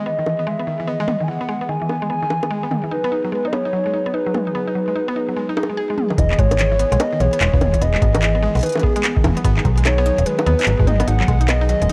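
A warbling, detuned lead carries a nostalgic melody over a hollow, flute-like pad with sidechain pumping and a filter sweep, while a woody, mallet-like FM pluck plays chorused, delayed arpeggios; at 0.3 seconds an overdriven organic electronic kit of bongos, handclaps, smooth hi-hat and toms joins this glitchy, wistful IDM excerpt at 147 BPM in E major with a swung 16th feel, moving between Emaj7 and G#m7, until a metallic, up-front FM bass and a deep, overdriven analog kick arrive at 6.2 seconds, all wrapped in light digital reverb and a worn cassette-tape pitch drift.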